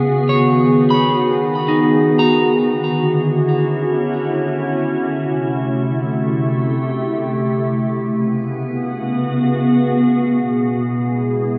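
A glassy, warbling FM pad with ensemble chorus, a slow attack and a long release opens this luminous, serene ambient fragment at 70 BPM in 3/4, holding up-front sustained chords that move from B6 through Dmaj9, Am7 and C#7sus4 to a closing E, while a slightly broken-up electric guitar picks delayed arpeggios only from 0.3 to 2.9 seconds, the whole piece sitting in a vast, echoing cathedral reverb with a cassette-tape character and tuned to A4 = 436 Hz.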